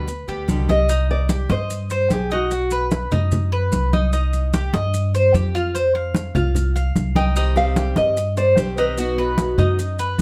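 A metallic, double-strung Cuban tres sits up front, picking arpeggios through this sultry Cuban son and guajira passage at 148 BPM in 4/4, over a dark, woody pizzicato upright bass, close, soft-handed ringing congas and grainy, mellow maracas set low in the mix. A warm, fingerpicked classical nylon-string guitar carries the melody, dropping out at 2.9 seconds and returning at 7.2, while a boxy archtop guitar with old strings adds brief picked accompaniment at the start and again from 7.4 seconds. Light reverb surrounds the ensemble as the harmony circles around C minor in a fragment cut from a longer piece.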